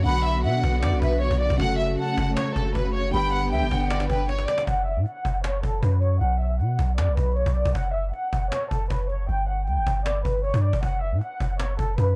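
Menacing and brooding, this half-time trap cut at 156 BPM in F# phrygian sets a lush, vibrato-rich violin section melody over a deep, dark 808-style bass that sits up front, with a woody, hard-handed cajon. Through the opening, a muted felt piano with audible action noise murmurs in the background, bowed symphonic strings hold soft-attack chords, and a breathy concert flute adds a second line through an analog delay. A drum fill at 4.3 seconds leads into a sparser passage from 4.7 seconds, where the violins, bass and cajon carry on in a small room with gritty tape and transformer saturation.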